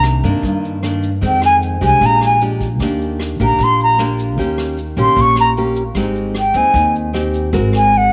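An airy, up-front concert flute with vibrato and a soft attack carries the melody in this romantic, sophisticated bossa nova excerpt at 152 BPM, over bright fingerpicked nylon-string guitar, a woody, growly pizzicato upright bass, a vintage brush kit with a punchy kick, rim click and rolled-off top, and a grainy tube shaker, all set in a moderate plate reverb as the chords move from Cm9 through Ebmaj7 to Ab9.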